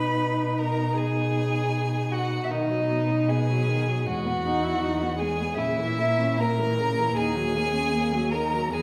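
Warm and serene, this slow romantic string-quartet movement in B major drifts in rubato 4/4 at around 71-80 BPM, with a dark, sul tasto first violin singing the melody with light vibrato and soft attack, a smooth, even second violin beneath it, an expressive viola adding portamento to its accompaniment, and a focused, up-front cello anchoring the bass, all heard from further back in a recital hall with a 1.3 s reverb as the harmony moves from B through Emaj7 and A#dim to D#m7 in this short cut from a longer piece.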